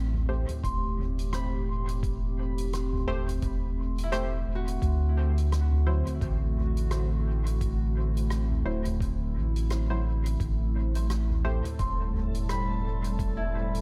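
A warbling, nostalgic pad holding sustained chords opens this deep, meditative ambient dub excerpt in A dorian, alongside a round, soft sub bass sitting up front. At 86 BPM in a swung 4/4, a soft-mallet kit of hi-hat, rim click and toms drifts through dub echo, while a muffled, thumpy electronic kick sits in the background. Muted, detuned chord stabs carry chorus, cassette tape colour and dub echo, and a fingerpicked Celtic harp rings out arpeggios from 0.6 seconds, returning at 11.8 seconds. The harmony moves from Am7 to D9 and back to Am7. Near the close, a reversed, granular, bright texture rises in at 11.6 seconds, all within an echo-heavy mix and a small room.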